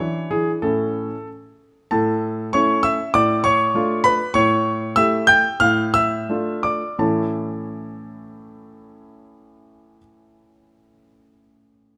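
Heard through close, detailed microphones in a recital hall with moderate reverb, a warm concert grand piano sits up front, its deep bass and short sustain giving each note a clear, defined edge. This is a classical-period sonatina cut from a longer piece, in A major and 2/4, moving between 82 and 100 BPM with a rubato feel that makes the mood elegant yet restless. The solo piano plays throughout the 12 seconds, ranging from A2 up to G6. The harmony opens on E7 before settling onto A, then shifts to a darker Dm/A and an A7, returning to Dm/A. The tempo slows from 3.7 to 7.0 seconds, and at 7.0 seconds a new section arrives with a return to A.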